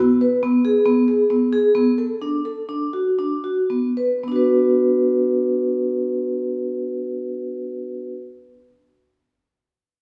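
Heard from further back in a recital hall with a wet reverb, this contemporary instrumental cut from a longer piece moves in 5/4 with a straight, restless yet pensive feel. A lone vibraphone, played with medium mallets, spins metallic, ringing arpeggios between B3 and B4, its fast motor vibrato lending an airy shimmer. The pulse slows from 0.4 to 4.2 seconds as the harmony moves from a rootless E/B to Bm7 and then settles on Bm, with the vibraphone sounding until 8.2 seconds.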